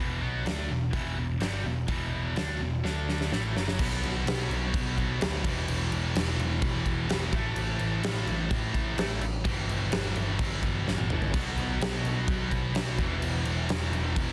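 A scooped, high-gain guitar riff, distorted and double-tracked up front, opens together with a growly, overdriven picked bass in this aggressive, menacing hard rock excerpt in E minor at 127 BPM. A huge arena drum kit with a fat snare, punchy kick and bright cymbals joins at 0.5 seconds, and a drum fill at 2.8 seconds carries the music into a longer passage moving from Bm through E5, A5 and B5. The dense, heavily limited modern master keeps everything dry and close, with a second drum fill at 10.9 seconds before the riff settles back on E5.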